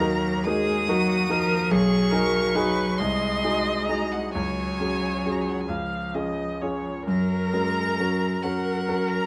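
Serene and warm, this excerpt from a slow romantic movement for piano quartet unfolds in a rubato 6/8 at about 42-48 BPM in F# major, with a focused, distant bowed violin singing the high melody with vibrato over a smooth, even cello second line, a viola with vibrato filling in the harmony, and an up-front, slightly worn concert grand with deep bass carrying the accompaniment, all in clear tone and dark production with a moderate studio reverb, as the harmony moves from D#m through a C# suspension to settle on F# at 7.1 seconds.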